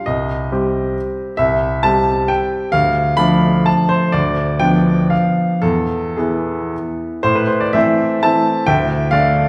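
Classical romantic triple-time dance in A minor for solo baby grand piano, graceful and rustic, moving with rubato between 105 and 143 BPM in 3/4 with dotted rhythms, the clear, intimate piano up front with audible action noise and long sustain across C2 to B5, set in a wet recital hall reverb heard from further back, its first phase passing through Cm, Dm and E before a new section opens on Am at 7.2 seconds in this short cut from a longer piece.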